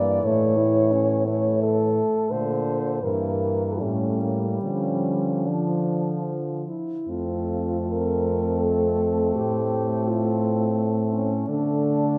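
A French horn carries the melody with a warm, singing vibrato, set back in the space so it sounds distant and roomy. This short, solemn and elegiac passage is cut from a longer classical piece for horn quartet. Flowing in a gentle three-beat metre with a free, rubato feel, it moves through a mournful progression of Bbmaj7, Edim/G and A7b9 before settling on Dm. At 7.1 s it turns to a brighter major-key section built on F and F/A, closing on an open D5. Beneath the melody, a mellow, close-miked horn plays a second line from the background, a distant accompanying horn adds light vibrato, and a mellow bass horn sits up front. A moderate concert hall reverb wraps the ensemble, giving the whole passage a spacious, reverent air.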